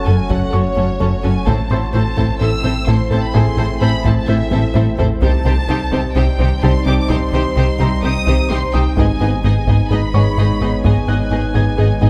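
Close, detailed microphones and light reverb frame this excerpt from a futuristic, vast hybrid orchestral and electronic film score at 128 BPM in 4/4, moving from F#m through Am and Cm to G#m. A focused studio violin section carries the melody over a lush symphonic violin second line, background violas, and very quiet cellos and double basses, while a warbling analog drone with chorus, a round sub bass and a rubbery, hollow square-wave bass riff fill the low and middle ground. A woody wave-folded pluck plays very quiet arpeggios, a worn, brilliant grand piano adds tape-echoed texture in the background, and a very quiet taiko ensemble drives the drums with a fill at 4.5 seconds.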